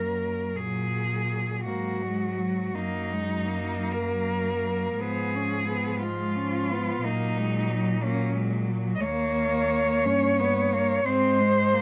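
Tender and warm, this classical passage for a cello quartet is cut from a longer piece and moves in a lyrical, rubato 6/8 at about 49-61 BPM in F# major. A rich, vibrato-laden bowed cello carries the melody up front, while a clear, focused cello sings a second line in the background. A third cello adds expressive accompaniment with soft attacks and portamento, and a smooth, even bass cello anchors the low end, all within light reverb as the harmony passes through G#m6 at 5.0 s and D#7 at 9.0 s before arriving on G# at 11.1 s.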